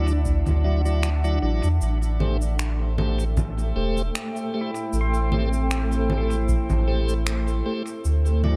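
A blurred, granular cloud pad opens this meditative ambient dub fragment, holding sustained Dadd9 chords alongside a round, up-front sub bass, piping tonewheel organ stabs and clean pedal steel arpeggios. The tempo is an unhurried 77 BPM in 4/4 with a slight swing on the sixteenths, and the harmony settles onto Am7 at 1.8 seconds before returning to Dadd9 near the close, all in A dorian with a tuning of A4 = 444 Hz. The organ is scooped and lightly overdriven, turning through a slow rotary speaker with vintage 12-bit sampler grit and dub echo. The pedal steel, played with fingerpicks and slide, is compressed, with volume swells and tape echo. Overdriven electronic cabasa, congas and finger snaps sound as if re-recorded in a large room, thrown into dub echo. A deep, tape-warm electronic kick sits in the background until 6.7 seconds, while light digital ambience keeps the hazy mood intact.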